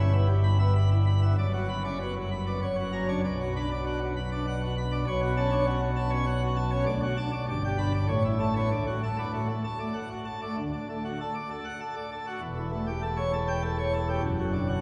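In a straight 3/4 at 98 BPM, this stormy, majestic classical organ toccata opens in B minor and turns toward D major at 6.9 s, with the second section arriving at 10.6 s. A solo pipe organ on full plenum, its mixtures lending a brilliant baroque voicing with audible chiff, sits up front and spans from E1 to B5. It is bathed in a wet cathedral reverb with a 5.0-second decay, and this passage is cut from a longer piece.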